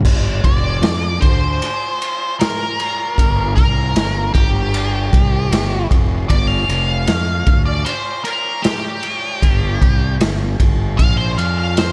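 A growly, overdriven fingered bass and a saturated garage drum kit with a punchy kick, pumping small-room sound and rolled-off top open this smoky, gritty 77 BPM blues rock and southern rock power-trio excerpt in G minor, before a dark octave-fuzz lead guitar solo with wah, distortion and slapback echo enters at 0.4 seconds over a G minor chord that shifts to F5 at 11.4 seconds.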